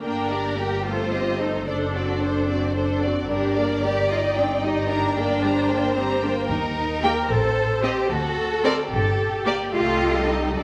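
Stormy and restless, this quick classical-period movement for string orchestra moves in 6/8 with a rubato feel, cut from a longer piece. A violin section carries the melody with a smooth, even tone that sits at a slight distance, while a second violin section plays close and expressive, its line colored by vibrato and portamento. Violas supply a focused, lush accompaniment, and the cellos join the double basses on the bass line, the basses adding a close, rich depth beneath. All five sections play together throughout the roughly 10.6 seconds, bowed with vibrato. The harmony circles through minor chords, half-diminished and dominant sevenths before settling briefly on a diminished chord, and a wet scoring-stage reverb with a 1.8-second decay surrounds the ensemble.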